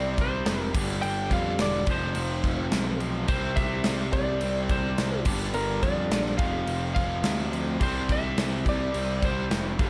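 Heavy and driving, this hard rock excerpt at 106 BPM in a straight 4/4 sets a dark, slightly broken-up lead guitar melody with analog delay over two bright overdriven rhythm guitars riffing in the background (one a cranked stack with spring reverb), a growly fuzz bass, a very quiet gritty tonewheel organ holding sustained chords through a slow rotary speaker with key click, and a punchy, gated 80s drum kit with bright cymbals that enters at 0.2 seconds, moving through chords C5, G5, F5, C, Gm and F5.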